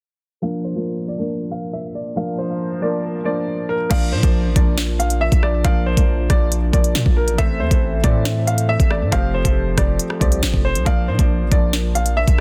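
Drill hip hop at 138 BPM in a half-time feel, menacing and ominous, opens with a dark, worn baby grand piano melody carrying delay over a felt-muted upright piano and a distant, roomy French horn section holding sustained chords in the background beneath a filter sweep, until at 3.9 seconds a knocking, up-front electronic drum kit with sharp snare, crisp hats, rim clicks and crash arrives alongside a punchy, heavy 808-style bass, all in a small room with a dense, heavily limited master.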